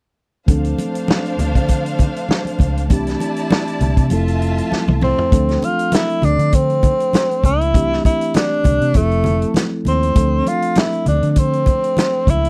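A dry, close 1970s-style studio sound frames this bittersweet, cinematic slice of lush soul with a gentle 16th-note swing: a punchy, up-front vintage drum kit, a dark, round foam-muted fingered bass, a mellow tine electric piano and very quiet, damped congas carry the groove, while an expressive violin section with vibrato plays a second line until 5.3 seconds, a drum fill at 4.7 seconds ushers in the next section, and a breathy tenor saxophone with scooped notes takes the melody from 5.0 seconds.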